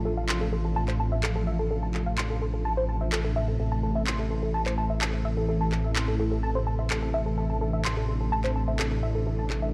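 Melodic techno at 127 BPM in A minor, this hypnotic, cinematic piece cut from a longer track sets a lush, airy unison pad with chorus, phaser and a filter sweep over a menacing, saturated detuned saw bass sitting up front, while a tight, nasal sequenced synth spins chorused arpeggios through dub echo and layered, tape-warm electronic handclaps enter at 0.3 seconds, all in a dark production with light reverb moving from F6/A to A minor at 3.6 seconds.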